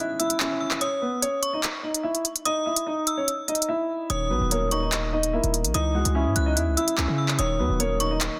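This cold, menacing drill cut rides a half-time feel at 146 BPM in 4/4, its electronic kit up front with crisp hi-hats and handclaps that drop out from 3.7 to 4.1 seconds before the hard-hitting 808 bass arrives at 4.1 seconds, punchy and heavy with a fast attack and a noise layer. A dark concert grand carries the melody through a low-pass filter with deep, natural lows, while a soft felt-muted upright piano offers intimate, short-sustained accompaniment that pauses after its opening moment and returns at 4.1 seconds. Above them, a metallic FM bell rings out a bright, inharmonic, warbling second line through chorus and tape echo, all over Dbm, Badd9 and Ebm harmony in a dense, heavily limited master with light reverb.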